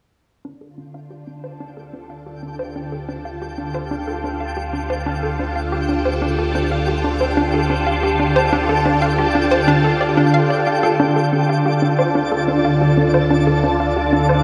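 Expansive and mysterious, this fragment of ambient, sequencer-driven space music settles on a D minor chord in a straight 4/4, with the string machine, pluck, bass and granular texture all fading in from the opening moments through about 11 seconds. Up front, a phased string machine holds sustained chords with a swirling, vintage sawtooth tone, its ensemble chorus and phaser giving it a bright, evolving sheen. Threaded through it, a hollow square-wave pluck plays a bouncy riff with a fast attack and short decay, coloured by chorus and tape echo. From about 2.4 seconds a twinkling granular texture adds sparkling, octave-up shimmer bathed in its own reverb, while a round analog bass sits deep and dark on a low D. The whole mix floats in a huge, wet reverb with a long tail, and a second section begins at 11.0 seconds before the passage cuts off.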